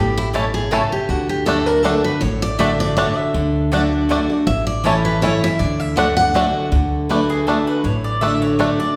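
Two picked steel-string acoustic guitars and a woody, growly pizzicato upright bass open this lively, driving bluegrass waltz in D major, taken from a longer piece, at 160 BPM in 3/4 with a swung eighth-note feel. One guitar, a warm, full-bodied dreadnought up front, carries the melody, while the other, bright and also up front with audible finger squeak, supplies the accompaniment as the harmony moves between A and D. A twangy, percussive banjo played with fingerpicks adds arpeggios almost at once, and a mandolin sits in the background with bright, double-string stabs. The melody guitar stops at 6.6 s, and the mandolin takes a solo from 6.7 s to the cut at 9.0 s. A wet recital-hall reverb gives the whole group the resonant air of a church or concert hall.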